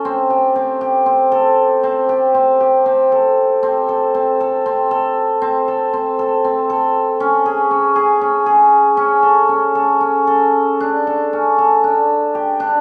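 A solo cimbalom, hammered, shimmering and ringing, carries this restless yet hopeful contemporary instrumental piece in a straight 7/8 at 234 BPM (counted in eighths), playing between C4 and A4 up front while a wet recital-hall reverb places the listener further back in the room, before a brief new section opens at 10.8 seconds in this fragment of a longer work.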